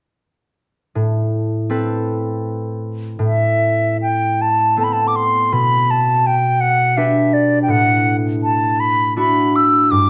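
A ringing, fingerpicked concert harp opens this mournful, longing Celtic slow air in A dorian at 1.0 s, moving through Amadd9, G/B and Dadd9/A in a rubato 3/4 at around 74-85 BPM, before an airy, soft-attacked wooden flute with a straight tone, rolled-off highs and a slapback echo takes up the melody up front at 3.2 s, all set in a moderate recital hall reverb with close, detailed miking in this excerpt cut from a longer piece.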